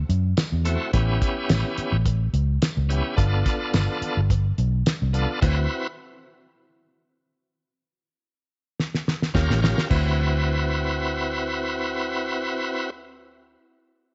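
Rollicking yet laid-back, this straight-eighth soul blues excerpt sets a round, foam-muted vintage electric bass and a thuddy, cloth-damped drum kit with a fat snare, tight kick, dark cymbals and tambourine beneath a bright, shouting tonewheel organ with key click and slow rotary speaker, heard in a small, lightly reverberant room, with a stop at 5.4 seconds and a drum fill from 8.8 seconds before bass and organ return on an Eb9 at 9.3 seconds.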